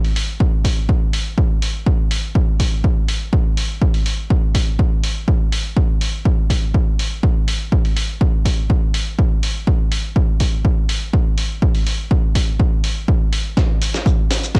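Dry cassette sound frames this sensual, funky house fragment at 123 BPM, where a gritty, compressed soul-sampler kit with pumping high-passed hi-hat and shaker and a fat snare is joined at 0.4 s by a punchy analog electronic kick sitting up front, before a build-up and drum fill at 13.6 s brings in a barely audible, close tambourine as the cut ends.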